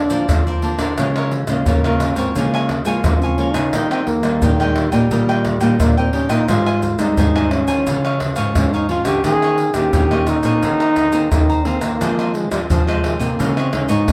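A punchy, warm trombone with light vibrato and scooped notes sings a jazz-inflected solo melody over a nostalgic, bittersweet samba and choro excerpt in Ab major at 87 BPM, supported by a thumb-plucked nylon-string guitar bass with audible finger squeak, a second fingerpicked nylon-string guitar in the background, a crisp, bright picked cavaquinho, and up-front, soft-handed maracas, pandeiro, tight surdo and tamborim, all under light reverb.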